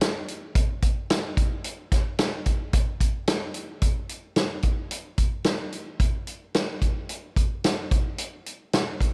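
Natural studio-room sound with light reverb carries this short, hypnotic and trippy rock cut, where an up-front vintage acoustic drum kit with a punchy kick, a medium-tuned snare, hi-hat and a rolled-off top keeps a straight 4/4 feel, moving into a new section at 3.8 seconds.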